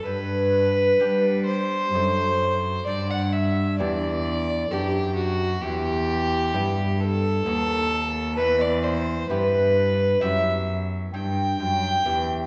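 A baroque-style sonata movement in G major opens with an alto recorder, violin and cello sounding together, joined a moment later at 0.1 seconds by a fingerpicked lute. The mood is flowing and introspective, moving in a slow, rubato 3/4 at about 65 BPM. The recorder carries the melody with a pure, hollow wooden tone, tongued with a chiff and touched by vibrato, though it sits in the background. Up front, a single violin plays a second line with a close, reedy gut-string sound in period style. It is matched by a cello on the bass line, nasal and rich with light vibrato yet slightly distant. The delicate lute fills out the harmony on double gut strings, some of them octave-doubled, as the chords move from G through D7/F# to E minor and B7/D#. All of this sits in a wet recital hall reverb, in a 12.5-second passage cut from a longer piece.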